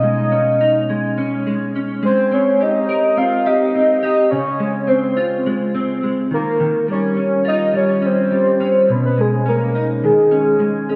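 Indie pop at 105 BPM in Ab major, dreamy and laid-back, in which a warbling, nostalgic lead with sub-octave weight, vibrato and tape echo carries the melody up front over a clean, compressed semi-hollow electric guitar whose picked chords drift in pitch under ensemble chorus, moving through B69, Abmaj9, Dbmaj7 and Eb9 inside a reverb-soaked plate wash with a hint of small-room air.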